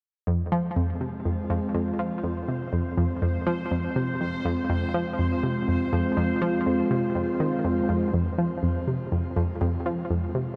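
Mysterious and hypnotic, this ambient, sequencer-driven space music fragment centres on an up-front analog pluck riff with a round, ring-modulated edge, set over an evolving, bright resonant pad holding sustained F minor chords and a bubbling, detuned stepped-filter texture that fades in until 8.1 seconds, all of it steeped in a huge wet reverb, while a filter sweep on the arpeggio sound marks the closing section from 8.1 seconds.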